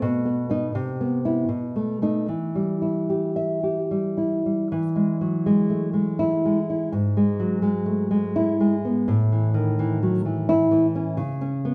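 Flowing in a rubato three-beat lilt, this romantic solo classical guitar piece, cut from a longer work, carries a wistful, melancholic mood. The nylon-string guitar sounds dark and thumb-plucked, sitting up front in a wet, large studio reverb. Around 4.7 s the harmony moves into a new section, and the guitar finishes at 11.7 s.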